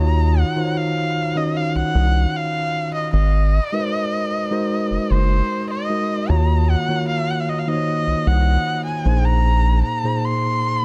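R&B excerpt at 76 BPM in E-flat dorian with a sensual, longing mood, where a nasal, bowed erhu sings the melody with vibrato, portamento and a touch of delay over mellow tine electric piano chords moving from Ebm9 to Ab9, back to Ebm9 and on to Bb9sus4, while a rubbery, hollow square-wave bass sits dark and up front before dropping out at 9.8 seconds.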